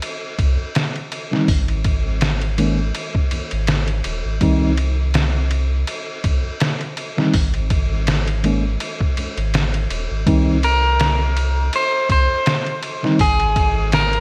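A muffled, pitched-down sampler drum kit with a thumpy kick and medium-tuned snare opens this brooding, melancholic trip hop piece at 82 BPM in C phrygian, joined almost at once by a round, sine-like sub bass with tube saturation. From 1.3 seconds a mellow, clean tine electric piano with harmonic tremolo and tape echo moves between Cm and Ab5 chords. At 10.6 seconds a twangy, slightly broken-up electric guitar steps up front with dub echo, all set in bright 1980s-style digital sheen with light reverb and vinyl crackle.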